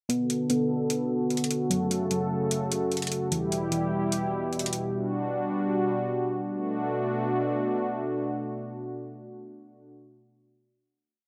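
A half-time trap beat of metallic, tape-tinged electronic hi-hats with fast rolls drives this dark, hard-hitting hip hop piece, while muted, felt-like synth keys warble through a looped eighth-note arpeggio with chorus and delay, and a smooth, detuned analog pad holds sustained chords under a filter sweep; the hats and keys drop out by 4.9 seconds, leaving the pad alone on a final chord in a rough home-demo mix with light reverb.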